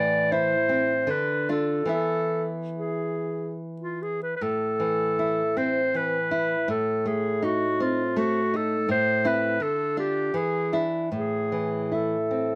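In a rubato 3/4 at 71-85 BPM, this yearning, elegiac romantic duo in A minor sets a bright, close-miked clarinet singing the melody up front over a full-bodied, fingerpicked nylon-string guitar with audible finger squeak, both playing throughout the 12.6-second excerpt in light reverb as the harmony moves from Am through Dm, E and an Adim before closing on E7 to Am.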